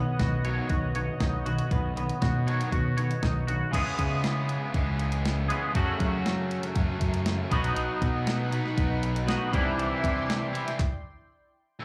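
Upbeat, jangly indie rock, this passage is cut from a longer piece and captured as a live gig heard through the venue's PA, with light club reverb. A clean, twangy electric guitar sits up front with a warm tone, analog chorus and slapback echo, playing a riff against a bright, compressed, distorted electric guitar riff. A growly, punchy fuzz bass, overdriven and fingered, drives underneath, while a crisp 8-bit drum machine with a thumpy kick, medium-tuned snare, handclaps, hi-hat and crash cymbal pushes forward with its own overdriven edge. A shimmering, retro pulse-width pad with slow-attack sustained chords hovers in the background, dropping out at 3.7 s and returning at 7.8 s. The harmony moves from Badd9 through C#m7, F#m and B to Cadd9, and the band stops at 10.8 s, leaving the distorted guitar and the pad to ring through the final second.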